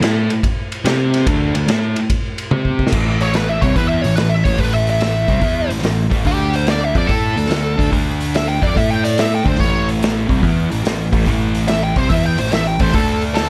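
A double-tracked, thick fuzz guitar riff opens this gritty, raunchy blues rock excerpt, joined from the start by a growling, overdriven electric bass and a vintage acoustic drum kit recorded in a small, pumping room. Rolling on a swung eighth-note feel in 4/4, the riff moves through C5 and D5 power chords before a drum fill at 2.5 seconds tips the band into a solo section built around A5 and D5. The fuzz lead guitar enters at 3.2 seconds, its dark, distorted tone shaped by wah, and carries the melody up front for the rest of the clip. The kit has a punchy kick, a medium-tuned snare and dark cymbals with a rolled-off top, while the riff guitar sits close and heavy beside the picked, direct-and-amped bass. Light reverb gives the raw, southern-tinged power-trio sound a touch of space.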